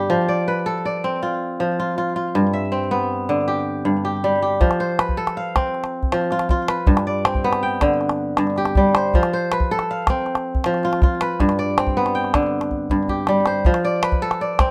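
Set in a straight 12/8 at 106 dotted-quarter beats per minute, this joyful, flowing fragment of West African string and xylophone music opens with a fingerpicked kora alone, its ringing, crisp arpeggios sitting up front with a slapback echo and spanning G2 to G5 over an alternation of F and G chords in F lydian. A deep, close and dry calabash joins at 4.6 s, equally up front, and plays a drum fill from 12.7 s before the music settles back on F at 13.7 s. Light reverb and close, detailed microphones keep the sound intimate and clear.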